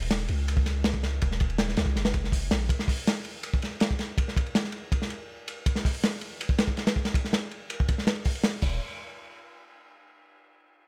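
A crunchy breakbeat drum kit leads this drum and bass and jungle excerpt, sitting up front with a saturated, gritty character, dark cymbals and a rolled-off top. The kit runs from the start to 8.7 seconds, pairing a tight kick and medium-tuned snare with hi-hat, ride and crash cymbals at a brisk 162 BPM in straight 4/4. Beneath it, a long sustained 808-style bass in Eb minor holds deep, sine-like tones with a fast attack and a mellow decay, sounding from the opening until 2.7 seconds and returning briefly at 8.6 seconds. The mood is frenetic yet atmospheric, with the dry sound leaving little reverb around the parts. Cut from a longer piece, the passage closes with a short final section in which the drums drop away.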